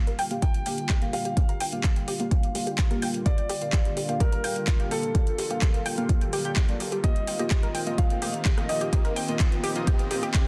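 Progressive house at 127 BPM in G minor, this driving, bittersweet excerpt from a longer piece sits entirely in a build-up, with filter sweeps running across the pluck, the polysynth stabs and the supersaw pad throughout its 10.5 seconds. A punchy, up-front electronic kick anchors the groove alongside a house kit of handclaps, rim clicks and metallic hi-hats, both set in small room ambience. A very quiet, tight sequencer bass in sawtooth and square tones moves between F1 and G1. A warbling, detuned analog pluck plays arpeggios with chorus, 12-bit sampler grit and dub echo, while a glossy, full-bodied chorused polysynth fires stabs, both pumping with sidechain. Alongside them a lush, evolving supersaw pad holds low-passed chords in the background, a dark, smooth baby grand piano carries the melody through dub echo, and a faint riser enters at 4.2 seconds as the harmony moves from Gm7 to F7sus4 at 7.0 seconds. 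The dense, heavily limited master wraps the mix in light digital reverb.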